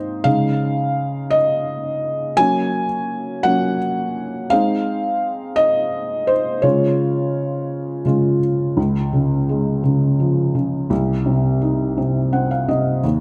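A muted, intimate felt-muted upright piano sits up front in a moderate scoring-stage reverb, giving the sound a vintage, close-up character. This is a tender, swaying pop piece in Db major, moving slowly at 56 BPM in a lilting 6/8 with a straight feel. The piano is the only instrument, covering a range from C2 to Ab5 as it carries the opening passage on its own through the first 8.8 seconds. The harmony moves through Dbsus2, Gb, Ab and Db before a new section brings a darker Cdim chord. A brief piano fill from 12.0 to 13.0 seconds closes this short cut from a longer piece.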